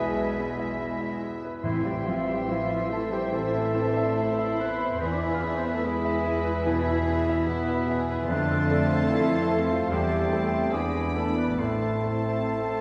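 A brilliant, polished concert grand piano carries the melody with a deep bass in this tragic, brooding romantic movement for piano and orchestra, set in A minor at 72 BPM with free, rubato timing, and shadowed by a dark, intimate violin section playing sul tasto. Airy flutes in the background, a clear oboe, a distant clarinet and a soft, floating symphonic violin section weave second lines, while a woody, lush viola section, a very quiet mellow bassoon and a hushed French horn section fill in the harmony over a rich double bass section and a remote cello section. Timpani strike briefly from 1.6 to 2.9 s, and the whole ensemble sits back in a reverberant concert hall, in this excerpt cut from a longer piece.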